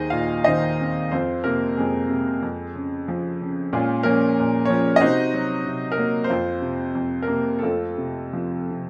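A bright upright piano carries this short classical fragment alone, its woody, polished tone sitting up front with a long sustain that lets each chord ring. The playing is lyrical and rubato in 4/4, giving the phrases a brooding, bittersweet pull as the time stretches and gives. The harmony moves from an Abadd9 over Eb through Fsus4, Db/F and Bbm, then darkens on a Cdim before settling from Fsus4 onto F at 7.6 seconds. The piano spans from a low Eb2 up to F5, so deep bass notes sit beneath the higher register. Close, detailed miking and a nearly dry room keep the sound intimate and present across the whole 8.9 seconds, which are taken from a longer piece.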